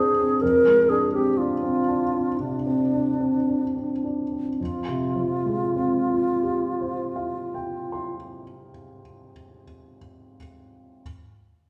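This classical, impressionist duo for alto flute and grand piano has a hazy, mysterious mood and a slow, rubato feel in four, and it sounds like a fragment lifted from a longer piece. The alto flute carries the melody from the start, its airy tone colored by vibrato and a soft attack, sounding both up front and distant. Beneath it, the grand piano provides a warm, intimate accompaniment with a natural sound and audible action noise. The opening phrase slows down over a Fm6 harmony, and at 4.6 seconds the music moves into a new section over Fmadd9. The flute falls silent at 8.1 seconds, leaving the piano alone until 11.0 seconds. A wet recital hall reverb surrounds the pair, and the listener seems placed further back in the room.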